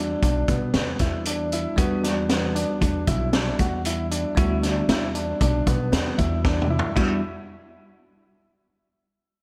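A moderate, lush hall reverb gives this tense, intricate progressive instrumental a big arena sound, moving at 116 BPM in 5/4 with a straight feel in E minor over an Em7 chord. A bright, bell-like tine electric piano carries the accompaniment while an intimate, boxy grand piano with audible action noise and slapback echo plays arpeggios, anchored by a woody, growly pizzicato upright bass. An up-front vintage drum kit with dark cymbals, a high-tuned snare and a punchy kick comes in at 0.2 s and plays a fill from 6.4 to 7.0 s.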